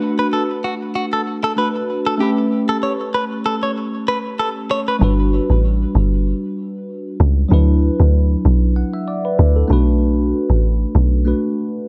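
A clean tine electric piano with a phaser opens this mellow, hypnotic afrobeats excerpt, laying down Bm7 and A9 chords with a gently swung feel. A bright, picked electric guitar, recorded direct with a scooped, compressed tone, plays a riff through spring reverb and delay until 5.0 seconds. At that point a round, dark log drum bass enters up front with a fast, percussive attack and a noisy decaying edge, while the chords move through Gmaj7 and D69 and back to Bm7 in a lightly reverberant digital space.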